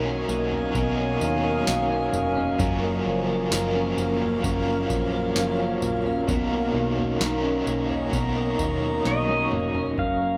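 Dream pop at a slow 65 BPM in 4/4, this blissful, floating fragment from a longer piece drifts over Bmaj9 and F#maj7 chords. Most up front is an electric guitar at the edge of break-up playing compressed, picked arpeggios through analog chorus and digital delay, joined by an overdriven electric guitar whose accompaniment carries tremolo and subtle chorus. Around them a granular cloud pad holds blurred, detuned chords in the background, while a drifting glass-harmonics texture adds glassy overtones with chorus, reverb and delay, and a vintage muted picked bass sits dark and round in the low end. A booming analog drum machine with a deep kick, crisp snare, tambourine and toms enters at 0.3 seconds and plays a fill from 9.1 seconds. The twangy pedal steel guitar, clean and played with fingerpicks and slide, appears only briefly at the opening and again from 9.1 seconds with its volume swells. 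The whole sits in wet studio reverb with the rough feel of a home demo mix.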